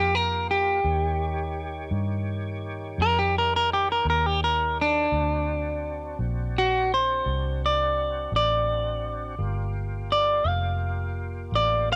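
A clean, fingered electric guitar takes the lead, playing an up-front solo melody across the whole 12 seconds, its tone carrying cassette tape color and plate reverb. This is smoky, brooding slow blues in a straight 12/8, with a gritty, overdriven tonewheel organ holding thick sustained chords far back in the mix, shimmering through chorus vibrato and a slow rotary speaker. A dark, round, foam-muted vintage bass sits punchy and forward underneath as the harmony moves from Gm7 to Eb7 and D7 before settling back on Gm7, all in a modest room that gives the home cassette recording its intimate feel.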